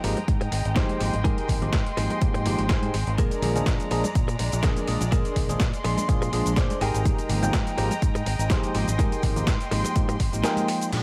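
A punchy, tape-warm electronic kick sits up front from 0.3 s in this funky, nostalgic stretch of filtered disco house at 124 BPM in F dorian, its lightly swung 16ths cut from a longer piece and moving between Fm11/Ab and Bb7. Around it, a bell-like tine electric piano with phaser, a bowed chamber violin section playing soft, sul tasto sustained chords, a bright, picked clean electric guitar riff with a fill at 6.3 s, and a fingered electric bass all pump against the kick under a low-pass filter. A gritty, overdriven sampler-style kit of snare, hi-hat, crash and cabasa, a very quiet, dry tube shaker and congas, light reverb, and a brief electronic downlifter at 10.9 s complete the sound.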